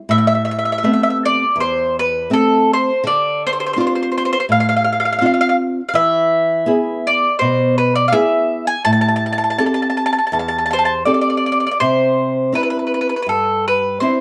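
This short Italian folk serenade, cut from a longer piece, is heard in a small room with moderate reverb that keeps it close and intimate. In A minor at 82 BPM in 4/4, with a light swing on the eighth notes and tuning set to A4 = 439 Hz, the mood is sunny and romantic. A mellow, round mandolin carries the melody up front, its picked double strings ringing between A4 and A5 and touched with plate reverb. Beside it, a fingerpicked nylon-string guitar on old strings gives a woody, small-bodied accompaniment from E2 to A4, also sitting close to the listener. Both play from 0.1 s to 14.2 s, moving through Amadd9, Dm7, E and Am7 before a new section opens on Cadd9 at 11.8 s.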